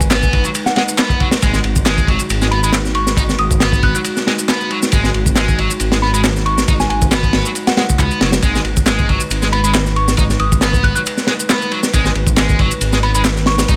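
Gritty and energetic, this breakbeat excerpt drives along at 137 BPM in G# minor, its sixteenths carrying a slight swing over a single G# minor chord. A crunchy, saturated breakbeat kit sits up front, with a punchy kick, a high-tuned snare and dark ride cymbal, its top rolled off, joined by an overdriven electronic shaker and handclaps. Beneath it a deep, rumbling detuned saw bass beats and buzzes, while a moody analog pad holds sustained chords in the background with chorus and sidechain pumping. An overdriven electric guitar enters at 0.1 seconds with a bright, picked riff, roughened by vintage 12-bit sampler grit and echoed by delay. From 0.7 seconds a soft FM synth bell adds a pure, warbling high melody, filtered to a telephone sound and bathed in chorus and delay, all set in studio reverb.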